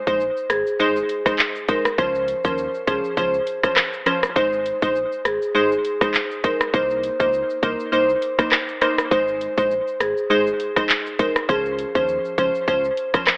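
The crisp, digital wavetable chord stab stands out from the first moment, its bright filter-pluck attack sitting up front with sidechain pumping and a dub echo trailing each hit. This summery, sunny dancehall excerpt moves at 101 BPM in 4/4 with a lightly swung sixteenth-note feel, in Ab major, cycling through Ab, Dbmaj7 and Cm7. A marimba played with medium mallets carries the melody in a warm, mid-forward voice, while a deep sine sub bass doubled at the octave sits low and full beneath it. The electronic island pop drum kit sits up front in the mix with a tight kick and metallic hi-hats, joined by handclaps, rim clicks and shaker. A moderate spring reverb, heavy echo and an AM-radio tone give the whole excerpt a broadcast character.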